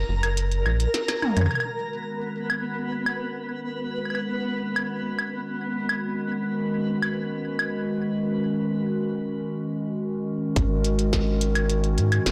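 Glitchy, cerebral IDM with a blown-out, overdriven sound and lush hall reverb: a rubbery, hollow square bass with tube saturation and a twinkling, shimmering granular texture open over a glitchy drum kit of clicky hats, claves, toms and a tiny soft-clipped snare; a warbly, nostalgic tape-like pad with chorus and 12-bit grit arrives at 1.9 seconds; and the bass returns at 10.6 seconds alongside a tight electronic kick.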